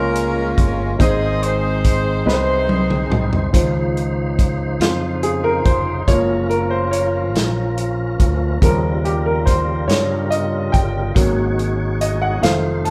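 The recording sounds like a band playing live together in one large studio, with a moderate reverb lending the room a gentle sense of space. This slow gospel passage in 6/8, cut from a longer piece, feels hopeful and reverent. An edgy, close-miked saxophone section opens with the melody, its pop-style ensemble sound punchy and rich with vibrato. Beneath it sit a clear baby grand piano, a full tonewheel organ holding sustained chords through a slow rotary speaker with light overdrive and chorus vibrato, and a warm, direct fretless electric bass placed up front. The acoustic soul drum kit sounds distant and roomy, with a medium-tuned snare and tight kick, and plays a fill from 2.3 to 3.5 seconds, after which the saxophones stop and the piano takes a solo with its short, natural sustain. The harmony moves from Bbm7 and Ab into Dbmaj9, Gbmaj7, Eb13 and finally Ab7sus4.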